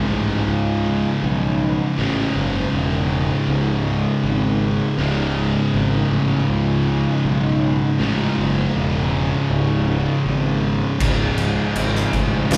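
Stoner and doom metal at 80 BPM in a straight 4/4, this short cut from a longer piece feels ominous and heavy, sitting on a C#5 power chord from the start. Three guitars carry the riff in the C#2 to C#3 range from 0.0 seconds: a bright, overdriven, double-tracked electric guitar alongside two thick fuzz guitars set further back, one dark and the other warm. A fuzz fingered electric bass enters at 0.1 seconds, growly and up front, its bright, direct-and-amped tone reaching down to C#1. An oversized low-tuned drum kit arrives only at 11.0 seconds with crash cymbal, boomy kick and fat snare, sounding saturated and gritty in a pumping big room with dark cymbals. The band plays live in one room, wrapped in a moderate large studio reverb.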